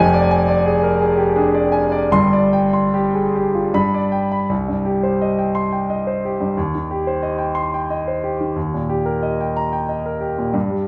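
A romantic classical character piece for solo piano, this brooding, passionate fragment from a longer work moves in a rubato 3/4 between 73 and 93 BPM in C minor. The concert grand sits up front with a clear, natural tone, deep bass and long sustain, spanning F1 to C6 within a moderate recital hall reverb. Its harmony passes from a diminished chord through a suspended G to G, then arrives on C minor at 4.5 seconds before turning toward E-flat.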